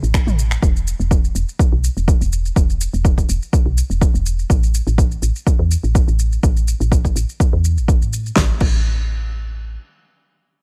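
A close, dry room sound frames this earthy, hypnotic afro house fragment at 124 BPM in 4/4, with lightly swung sixteenths. An up-front, punchy electronic kick and a layered deep house kit with a fat snare, finger snaps, shaker, toms and crash cymbal are both overdriven and touched with studio reverb. Beneath them a soft, round, woody FM bass with a fast, decaying attack and dark tone pumps against the kick, carrying on alone after the drums stop at 8.8 seconds until 9.8 seconds.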